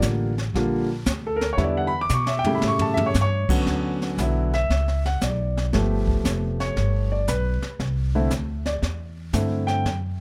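This playful jazz piano trio excerpt opens with all three players together at a 116 BPM swing in 4/4, the concert grand piano taking a solo over Gm7, Em7 and A7 through the first 3.7 seconds. The piano sounds intimate and natural, with audible action noise, deep bass and long sustain, sitting up front beside a woody, growly pizzicato upright bass strung with steel. Behind them, a brushed drum kit fills the airy studio room with dark cymbals, a high-tuned snare and a boomy kick, adding a fill from 2.1 to 3.1 seconds. The second section moves through richer colours, D69, G9 and C69, as the piano carries the melody until 9.9 seconds and the bass and drums continue to 10.2. Close, detailed microphones and light reverb give the whole a polished, warm closeness.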